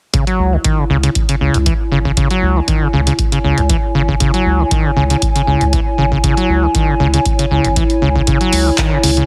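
A lightly swung 4/4 groove at 118 BPM drives this trippy, raw acid house excerpt in D-flat minor, built on a deep analog kick and a punchy drum machine of handclaps and hi-hat that sounds re-recorded in a large room. Up front, a squelchy, resonant sawtooth acid bass riff with a filter sweep is roughened by overdrive, cassette tape and tape echo, while a thick, saturated sine sub bass enters at 0.4 seconds. From 0.6 seconds a warbling, nostalgic lo-fi pad drifts in with detuned square and triangle tones, chorus and reverb, pumping with the basses under a heavily compressed, radio-like sheen.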